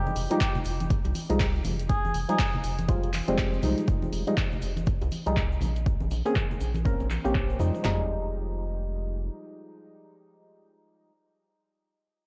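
Deep house with a late-night, deep mood and a swung 4/4 groove, this cut from a longer piece moves from Fm9 to Bbm9 and back to Fm9, all within a dreamy mix soaked in plate reverb. A cup-muted trumpet opens with a short, veiled jazz-style solo phrase, soft and vintage with vibrato and scooped notes, roughened by 12-bit sampler grit and diffuse ambient delay, before falling away at 2.6 seconds. Up front, a hollow, organ-like percussive stab carries the harmony, mellow and wave-folded, with chorus, phaser, cassette tape colour, sidechain pumping and ambient delay, and it keeps sounding until 11.1 seconds. Beneath it, a rubbery, nasal square bass with a resonant filter pluck and moving notch bounces and pumps, dark and sustained, until 9.3 seconds. Two punchy, tape-toned analog drum machine parts, re-recorded in a small room, supply kick, snare, toms, handclaps and low-pass-filtered hi-hats. 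In the background, congas and bongos and a grainy, bright egg shaker add acoustic texture, with the drums and percussion dropping out near 8 seconds.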